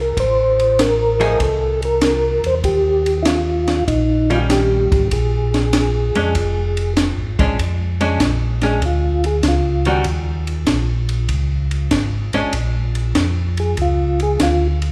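A soft, flute-like tonewheel organ opens on the melody with a percussive second-harmonic attack, chorus vibrato and a slow rotary speaker. Beneath it, a second tonewheel organ holds down the bass with a round, mellow tone, audible key click and its own slow rotary swirl, sitting up front. A compact cocktail drum kit joins almost at once on hi-hat, kick, ride and snare, with a high-tuned snare, punchy kick and rolled-off top giving it a dark, smooth feel. A hollow-body archtop guitar, picked, compressed and clean, adds accompaniment from 1.2 to 12.5 seconds. This bluesy, swinging soul jazz organ trio moves over a rootless F, Eb7 and Bb7#9, and at 7.6 seconds a second section brings an organ solo, with the melody organ briefly dropping out before returning near the close. A moderate recital-hall reverb lends the piece the air of a church or concert hall, and the passage is cut from a longer performance.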